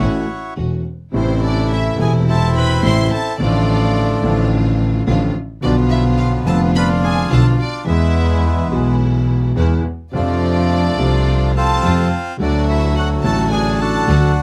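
Rubato phrasing in 4/4 shapes this dramatic, melancholic tango, a passage cut from a longer piece whose chords move from Am through Dm/A, Bdim and E to F and D. A reedy, dark bandoneon carries the melody over a warm, intimate concert grand piano with audible action noise, deep bass and long sustain, while a single bowed double bass sits up front with a rich, even tone and vibrato. A soft-attack studio violin section played sul tasto with light vibrato adds a smooth second line, and a clear, focused string section places stabs in the background, all captured by close, detailed microphones with light reverb.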